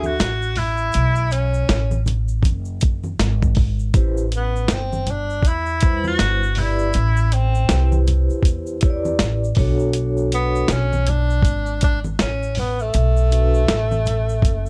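A swung sixteenth-note groove in 4/4 sets up this nocturnal, mellow jazz-hop excerpt, with a gritty, compressed sampler-style drum kit arriving at 0.2 seconds, pairing a thumpy kick with a medium-tuned snare and hi-hat up front. A woody, dark pizzicato upright bass sits prominently beside it, while bright congas and a tube shaker, played with soft hands, add a small-room texture in the background. A vibraphone struck with soft mallets rings through the chords B7(no3), Am9 and Bm9, its slow motor vibrato lending an airy glow before it drops out at 13.6 seconds. Over this, a breathy tenor saxophone carries the solo melody in a jazz style, clear in tone yet roomy, with vibrato and scooped notes. The mix is dry, with little reverb.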